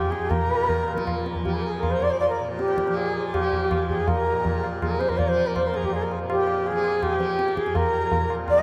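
An airy, bamboo-toned bansuri opens this Hindustani classical excerpt, its soft-attacked, vibrato-laden melody sitting up front yet sounding distant. Beneath it sound a shimmering, softly plucked tanpura drone and a reedy, breathing pedal harmonium that carries a second line in the background. A low-tuned, ringing tabla joins at 0.1 seconds, close and dry. The piece is in raga Bageshri on F, in 5/4 with a straight feel at 162 BPM, and it speeds up across its 8.6 seconds. The mood is solemn and longing, with the close-miked harmonium adding a full body under the bansuri's line. A huge, wet ambient reverb places the performance in a vast, echoing space.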